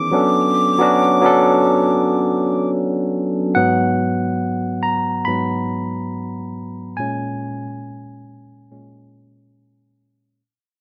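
This excerpt from a longer piece has a dry, open-air sound with little reverb, giving a sultry, smooth slice of slow R&B with a gentle sixteenth-note swing. A close-miked, breathy silver concert flute sings a brief, expressive melody line in a straight, tongued tone, touched with slapback echo, until 2.7 seconds. Meanwhile a barky tine electric piano sits up front, lightly overdriven through a combo amp, voicing Bm9 before taking a solo over G#m7 and A#m7 from 3.5 seconds as the recording fades out to 10.4 seconds.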